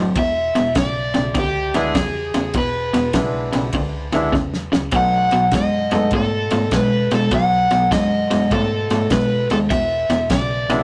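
Electric blues shuffle at 101 BPM in E mixolydian, rollicking and soulful, with a crunchy, up-front overdriven guitar riff and a round, punchy hollow-body bass moving from E7 to B7 and back to E7. An overdriven semi-hollow guitar carries the melody through digital delay over a soul drum kit with dark cymbals and a tight kick, which plays a fill at 4.3 seconds, while a brilliant, woody upright piano adds accompaniment from 1.8 to 6.1 seconds. This cut from a longer piece has a rough rehearsal-room sound with small room ambience and tube saturation.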